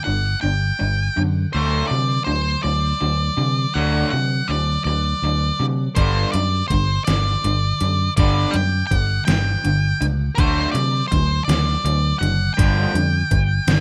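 Restless and moody, this short indie rock excerpt moves at 54 BPM in a straight 6/8, pairing a dark, up-front octave-fuzz lead guitar melody with tape echo against a bright, double-tracked garage guitar riff and a round, punchy fingered bass, while a detuned 8-bit drum machine with a thumpy kick and tape-warm tone enters at 6.0 seconds over G5 and D chords in a dry, rough home-demo mix.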